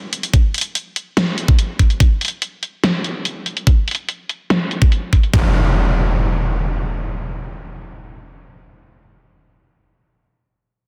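Heavy wobble dubstep with a chaotic, weighty mood, moving in a half-time feel in 4/4 and taken from a longer piece. An electronic drum kit of filtered hi-hats and a huge snare opens the clip, its bright hats and tape-warm tone set up front with studio reverb while a filter sweep runs across the drums through the first 5.3 seconds. A layered, knocking electronic kick sits just as forward, also bathed in studio reverb, and it carries through to about 5.4 seconds. At 5.3 seconds the drums give way to an up-front electronic impact that takes over the second section and rings on to 10.2 seconds. Light reverb and digital ambience surround the parts, and the dense, heavily limited modern master keeps the sound packed and forceful.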